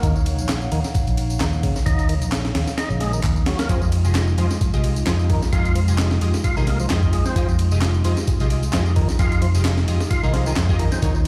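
A gritty, raw breakbeat track at 131 BPM in F minor opens with its full groove at once: a compressed, sampler-style break with a thumpy kick, a high-tuned snare and hi-hat sits up front in studio reverb, while a quieter, overdriven garage kit layers handclaps, ride cymbal and tambourine beneath it, all riding a 55% swing on the sixteenths. A round, punchy fingered electric bass, amped and dark in tone, holds the low end between F1 and F2 and stands forward in the mix. A thick, percussive tonewheel organ plays a riff with key click and third-harmonic percussion, lightly overdriven through a fast rotary speaker and trailed by dub echo. Underneath, a deep, moody analog pad of detuned square, sawtooth and triangle waves with a sub octave and ring modulation sustains slow-attack chords, chorused and pumping against the sidechain, moving from Ebm9 to Fm9. At 3.7 seconds a bold, bright orchestra-hit-like stab of detuned unison sawtooths and noise enters with a fast, decaying pluck, coloured by phaser, cassette tape, dub echo and its own reverb. 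The whole piece sounds as if played on a big sound system in a bare stone room, and this short cut from a longer track ends at 11.3 seconds.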